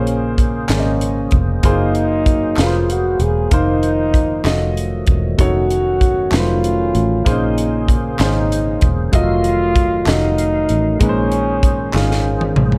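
Fervent and solemn, this slow gospel excerpt in a straight 6/8 sets a warm, lightly vibrato French horn melody over baby grand piano, a fat, lightly overdriven tonewheel organ churning through a fast rotary speaker, a dark, round fingered electric bass, a crisp, polished drum kit with a high-tuned snare that closes on a fill at 11.9 seconds, and hollow group handclaps in the background, all in a close, dry room.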